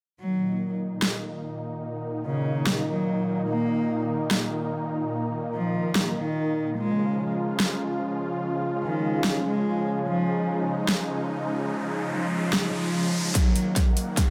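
Half-time at 146 BPM in Eb minor, this chaotic, aggressive heavy wobble dubstep excerpt sets a dark, woody bowed cello melody with vibrato, portamento and delay over a lush, detuned supersaw pad that pumps under a filter sweep, while a deep, moody ambient pad fades in behind, a big-room drum kit with a huge snare and metallic hats enters at 1.0 seconds, an electronic riser builds from 11.2 seconds, and a punchy electronic kick arrives with a drum fill at 13.4 seconds as the chords move from Eb minor to Db and back, under a light reverb.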